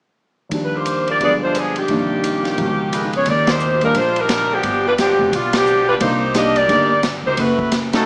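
A clear, tightly blended saxophone section carries the melody in this energetic big band swing excerpt in Eb major, moving at a brisk 175 BPM with a moderate swing on the eighth notes. Beneath it, a concert grand piano accompanies with an intimate, natural tone, its deep bass register and audible action noise adding character. A polished, airy drum kit drives the groove on ride cymbal, hi-hat, snare and a punchy kick, its dark cymbals sitting in a hall-like space. At 3.3 seconds a woody, thumpy pizzicato upright bass joins, and the band hits accents at 3.4, 5.5 and 7.9 seconds over rich harmonies such as Ebmaj9, G7b9 and Cm11. A moderate large-studio reverb surrounds the group, though the whole excerpt carries the character of a small speaker.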